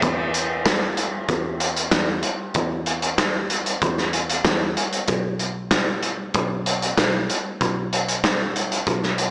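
A loose indie drum kit of kick, snare and hi-hat sits up front from the first moment, its punchy kick, medium-tuned snare and rolled-off top giving a warm, pumping room sound, while a vintage muted fingered electric bass plays low and round underneath, dark and amped, much quieter in the mix. This dreamy, hazy slice of shoegaze and dream pop moves in a straight 4/4 and runs 9.3 seconds, cut from a longer piece. A lush hall reverb and a small-speaker character lend the whole a soft, distant haze.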